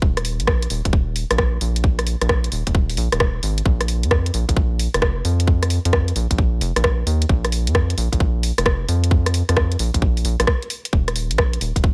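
UK garage in a two-step style, this bouncy, skippy excerpt runs at 132 BPM in 4/4 with a 66% swing on the sixteenths. A rubbery, hollow square-wave bass with a dark, resonant filter pluck sits up front, spanning Eb1 to F2, beside a tight, layered electronic kick and a garage kit of hi-hat and rim click. Both drum parts are overdriven and bathed in studio reverb. The ambience is digital, with every part pushed forward.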